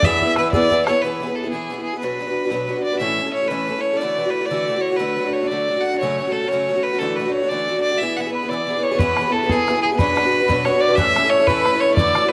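This lively, rollicking Celtic jig in 6/8 opens at 0.0 seconds with the full group sounding together: a bright, focused fiddle carrying the melody with light vibrato, a thumb-plucked concert harp and a pure, mellow tin whistle on a second line, a boxy picked archtop guitar, and a tight, damped bodhran. The harp, whistle and bodhran drop away almost at once, leaving the bowed fiddle up front over the guitar's accompaniment at 120 BPM in E mixolydian. The chords move through E, Bm, A, Dadd9, D and F#m before settling back on E. At 8.3 seconds the distant, expressive whistle and the very quiet, ringing harp return in the background. At 9.0 seconds the close, dry bodhran rejoins as the section begins again. A wet echo-chamber reverb gives the studio sound a roomy glow, and the recording is cut from a longer piece.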